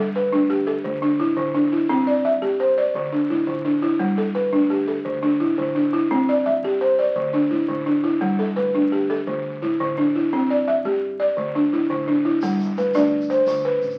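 West African traditional music built on string and xylophone sounds, this short cut from a longer piece has a hypnotic, warm mood, moving at 114 BPM in a straight 12/8 in G major. The balafon carries the arpeggios up front throughout, its woody, dry tone struck with soft rubber mallets and carrying a buzzing edge in a boxy small-room sound. Beneath it, a pizzicato upright bass with steel strings sits in the background, low and acoustic. The harmony cycles steadily between G, D5 and C, giving the figure its circling, trance-like pull. At 12.4 seconds a grainy, bright tube shaker joins with a band-limited, vintage character as the music moves into a new section. The whole recording carries the crackle of a very old 78 rpm record and a moderate studio reverb.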